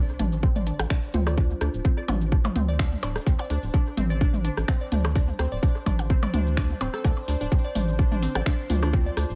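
An echo-heavy mix with little reverb frames this quirky, cool minimal techno excerpt, which opens with a barely audible sub drop while a tight, up-front kick and a round, deep, sidechain-pumped analog bass anchor a garage kit of cabasa, finger snaps and bright hats through analog delay, a tape-warm click kit of rim clicks, toms and blips in dub echo, a juicy, squelchy pluck riff run through phaser and tape echo, a bubbling stepped-filter texture with chorus in the background, and a woody kalimba that surfaces briefly at 1.1 and 8.7 seconds.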